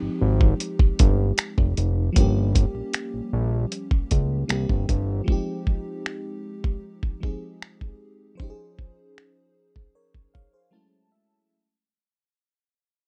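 A dry, close recording with little reverb opens this short cut from a longer contemporary R&B piece in F minor, moving at a slow, straight 77 BPM in 4/4 with a sensual, longing mood and a fade-out running throughout. An FM electric piano layered with a soft pad carries the accompaniment, its lush, dreamy, mellow tone shimmering with chorus as it moves through Fm7, Gm7b5 and C7 before settling on Fm7 and a rich Dbmaj9. Underneath, a fat analog bass sits up front with a thick, nasal, saturated sawtooth-and-square character, holding the low end until it drops out at 5.2 seconds. The dusty, sampler-style drum kit of finger snaps, hi-hat and a thumpy kick carries gritty 12-bit texture with a compressed, tape-warm sound, sitting prominently in the mix. Near the close the electric piano slips in a fill at 10.3 seconds, and a break arrives at 10.7 seconds as the harmony shifts to Gbm7.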